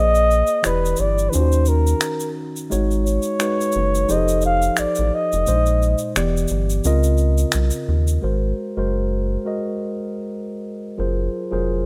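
Smooth and sultry, this neo-soul R&B clip moves at an unhurried 87 BPM in 4/4, with a gentle swing on the sixteenths. A breathy, dark flugelhorn carries the melody up front, played close-miked in a jazz manner with vibrato, and it falls silent at 6.2 seconds. Beneath it, a mellow tine electric piano lays down clean, direct accompaniment through lush extended chords such as Bb9sus4, Ebm7, Dbmaj13 and Gbmaj9#11. A rubbery square bass gives a hollow, bouncy low end with a fast attack, a filter pluck and a moving notch, while a close and dry tube shaker with finger snaps ticks along until 8.2 seconds, where the harmony shifts to Ab9. The sound is dry and intimate, with the rough, homespun character of a demo mix.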